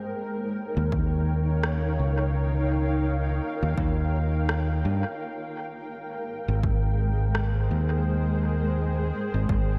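Ambient dub at 84 BPM in Eb mixolydian, peaceful and spacious, with a lightly swung 16th feel, cut from a longer piece and drifting from Eb7 to Abmaj7 at 5.2 seconds. A dark, blurred granular cloud pad opens alone and holds full-bodied, detuned chords with its own built-in reverb, joined at 0.8 seconds by an up-front fingered electric bass with a direct, warm tone. A punchy, overdriven electronic kick enters at 0.9 seconds, and a faint electronic rim click carries dub echo, all set in a dreamy mix soaked in lush hall reverb with a faint mains hum.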